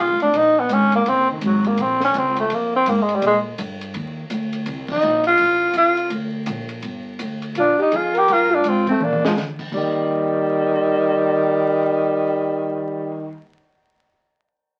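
A breathy tenor saxophone carries the melody up front, its whispered, intimate tone marked by vibrato, scooped notes and a soft attack in this relaxed small-group swing and bop piece in Eb major, cut from a longer performance at 166 BPM in 4/4 with a swung eighth-note feel. Underneath, a pizzicato upright bass on gut strings gives a woody, thumpy pulse, while a compact cocktail drum kit sits low in the mix with a dark, rolled-off sound, a high-tuned snare, a tight kick, ride, hi-hat, toms, crash and cymbal swells. A band accent lands at 4.9 seconds, and a short drum fill between 9.0 and 9.4 seconds leads toward the closing passage. At 7.6 seconds a punchy, forceful alto saxophone joins as a second line, also placed up front. The harmony moves through chords such as Gbadd9, Fm, Gm11 and Bb before settling on Eb. A wet club reverb and the crackle of a very old 78 rpm record give the whole a hazy, vintage atmosphere.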